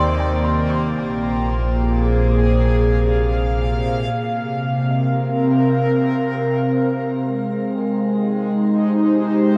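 An airy, breathy pad holds sustained chords from Ebmaj7 through Cm7 to Abmaj7 over a deep sub bass, a soft round pluck's arpeggios, a resonant drone of moving overtones and a very quiet glassy texture in this reflective, melancholic ambient excerpt in C minor at 77 BPM, where the bass, pluck and glass texture fall away by 5.7 seconds and a filter sweep on the pad begins at 4.1 seconds, all within a vast cathedral reverb.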